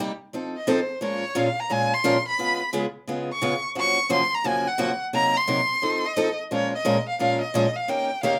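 A lively swing groove drives this short jazz fragment, where a bright, boxy picked steel-string guitar comps through minor-seventh and dominant changes as a close, expressive violin carries the melody with vibrato, soft attacks and gliding portamento, both up front in a small, modestly reverberant room.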